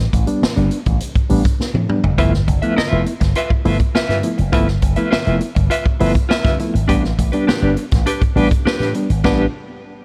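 A bright, amped slap bass with an envelope filter opens this strutting, energetic funk piece at 102 BPM, joined by reedy, direct electric piano stabs with fast tremolo and an up-front big-band drum kit with dark cymbals, a medium-tuned snare and a punchy kick, whose fill at 1.6 seconds closes the opening break before a clean, picked electric guitar with tremolo enters at 2.2 seconds over A9sus4 and G13 chords, all leading to a band accent at 9.3 seconds in a small, warm room.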